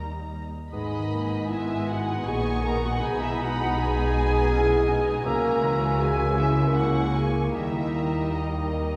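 Melancholic and elegiac, this slow romantic orchestral movement in G# minor drifts at 79 BPM in a rubato 3/4, with a veiled, con sordino violin section carrying the melody over muted violas, lush cellos and up-front double basses while a ringing, very quiet harp spins arpeggios; from 0.7 seconds a second violin line, pure flutes, a distant oboe, a smooth-topped bassoon and a dark, tight French horn section with sustained chords join in, a clear clarinet follows at 1.5 seconds, and the whole is heard from further back in a wet concert hall.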